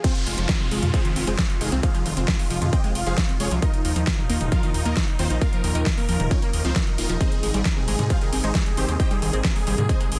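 A straight 4/4 pulse at 134 BPM drives this bittersweet uplifting trance drop in F minor, cut from a longer piece, with a punchy up-front electronic kick and a big-room dance kit of huge snare, metallic hats, crash and toms, while a gritty, nasal, wave-folded synth bass with tube saturation enters at 0.3 seconds and pumps against the kick. Huge, bright supersaw chords carry the melody through a phaser, cassette tape colour and dub echo, and a punchy, full-bodied unison pluck spins arpeggios with its own phaser and echo. Beneath them, a thick, warbling vintage pad holds chorused chords in the background over Fm7, Ebsus2 and Abmaj7, as a swell and downlifter sound until 3.6 seconds, all inside digital ambience and a dense, heavily limited modern master.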